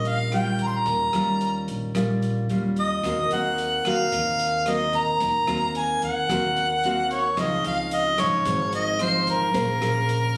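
A mellow harmonica with light vibrato and scooped notes carries the up-front melody in this smooth, wistful 111 BPM bossa nova excerpt, over fingerpicked nylon-string guitar with audible finger squeak, woody pizzicato upright bass and a dark jazz drum kit of hi-hat, boomy kick and rim click sitting in the background, as the chords move from Eb9 to Ebm6, Dbmaj9 and Bbm9 in a light reverb captured on a phone in the room.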